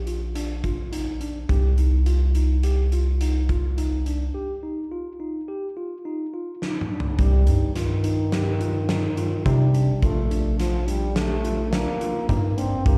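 A rubbery, up-front square-wave bass drives this brooding progressive instrumental in 5/4 at 106 BPM in C dorian, joined by tine electric piano arpeggios with medium tremolo and slapback echo and a big, dark rock drum kit with a fat snare and punchy kick, pausing for a break at 4.3 seconds and a drum fill before a breathy, whispered trombone enters with slapback echo at 7.2 seconds, all heard as a live gig through the venue's PA in a recital hall.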